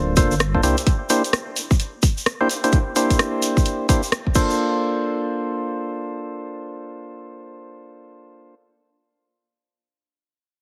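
Late-night and soulful, this two-step UK garage clip at 129 BPM swings its 16ths over Gm11, C9 and Bbmaj9 chords, led by a hollow, mellow organ stab with chorus and delay that sits up front throughout. A deep, rumbling detuned saw bass pumps under it only until 0.7 seconds, while a tight, up-front electronic kick, a layered garage kit of crash, warm hi-hats and rim clicks, and a grainy vintage egg shaker drive the groove before dropping away near 4.6 seconds, leaving the stabs to carry the second section. The sound is heavily compressed in a radio-like way, with a moderate plate reverb lending the small-room drums some space.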